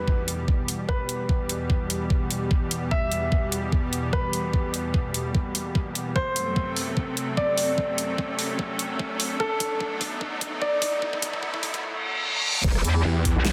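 Heavy wobble dubstep in E minor at 148 BPM with a swung, half-time feel, this chaotic, aggressive excerpt opens on a polished grand piano melody over a lush, detuned unison pad with sidechain pumping, while a riser, filter sweep and knocking electronic kick with a huge-snared, bright-hatted drum kit drive a build-up moving from Em to F#dim, with a drum fill from 6.2 seconds. A reverse cymbal at 11.8 seconds sets up the return to Em at 12.6 seconds, where a metallic, chorused FM wobble bass sits up front, joined briefly by a snarling, detuned sawtooth bass with a moving notch. The sound is dense and heavily limited, set in a moderate digital room reverb.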